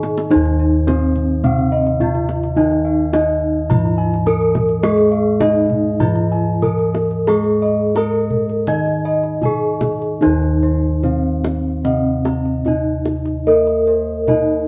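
Serene and shimmering, this excerpt of Javanese gamelan in Eb pelog barang moves at 74-106 BPM in a straight 4/4, opening with a brief drum fill on the kendang, whose tight, close and dry sound comes from soft hands. A bronze metallophone carries the melody with a ringing, dark tone and shimmering beats from its paired tuning, while a second metallophone plays a smooth accompaniment below, bossed gongs add bright, round arpeggios up high, and another set of padded-beater bossed gongs supplies a mellow, soft bass up front. The ensemble plays live in a moderate stone room whose 1.2-second reverb lets the bronze ring, shifting into a new section at 10.2 seconds.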